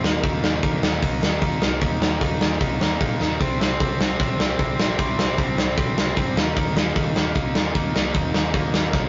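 A punk rock excerpt bursts in with an up-front, overdriven, bright distorted guitar riff, a dark, round hollow-body picked bass and a big, punchy rock drum kit in a roomy space, all urgent and aggressive in a straight 4/4 with drum fills at 3.2 and 8.9 seconds, captured as a rough rehearsal-room recording with light reverb, tube saturation and a rolled-off top.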